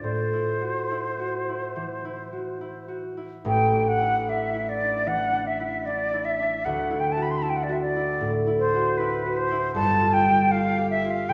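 Mysterious and hazy, this short excerpt of an impressionist classical duo drifts in A dorian at a rubato 68-78 BPM in 4/4, the chords moving from Am6 through Asus4 and Dadd9 to G5. The concert flute carries the melody up front with an airy, tongued, expressive tone and vibrato, while the concert harp accompanies beneath it with warm, ringing fingerpicked notes. A wet scoring-stage reverb places the pair further back in a large room, lending the sound a soft, lingering glow.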